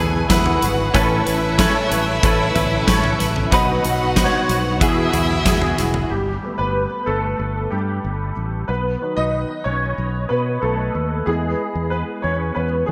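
This uplifting piano-driven pop excerpt in E major at 93 BPM opens with a clear, up-front concert grand piano touched by a chorus effect, a punchy fingered electric bass, a twangy, compressed clean guitar riff with tremolo sitting in the background, and a bowed studio violin section adding an expressive, vibrato-rich second line. A huge arena drum kit joins at 0.3 seconds, its fat snare and kick bathed in gated reverb. At 6.1 seconds the drums, guitar and violins drop away, and the piano, with its deep bass, long sustain and audible action noise, takes a solo over the bass until 12.9 seconds, all within a bright 1980s-style digital production and a moderate plate reverb.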